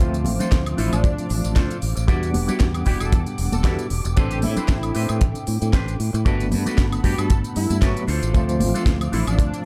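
Nu-disco at 115 BPM in 4/4 with a light 16th-note swing, this short excerpt from a longer piece feels sunny and feel-good as it moves through Dm7, Em9, Am11 and Gmaj9 before returning to Dm7. A tight, natural kick and a growly, up-front fingered electric bass anchor the groove, while a layered electronic house kit adds a cracking snare, crisp hats, tambourine and woodblock, and congas and a tube shaker tap softly in the background from 0.2 seconds. A barky, overdriven tine electric piano carries the accompaniment with fast tremolo, sidechain pumping and digital delay, and a dark, clean electric guitar picks a riff through an envelope filter with subtle chorus and delay. Muted violins sustain veiled chords in the background, bowed con sordino with light vibrato and their own sidechain pumping. From 0.8 seconds a thick, detuned unison lead with a bold sawtooth edge takes the melody, dressed in ensemble chorus and dub echo. 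The production is dark and warm, set in a small room ambience.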